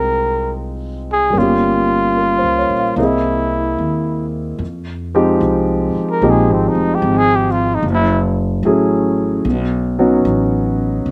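A slow 74 BPM swing in 4/4 carries this smoky, wistful F minor jazz ballad fragment, tuned to A4 = 437 Hz, where a dark, breathy trumpet with light vibrato and a slapback echo sings the melody from the start until 8.2 seconds over an intimate grand piano with audible action noise and long sustain and a woody, thumpy pizzicato upright bass on gut strings, all three up front in a dry outdoor sound with little reverb, as the chords move from Fm9 through Gm7b5 and C7alt and later to Gbm7 and B9.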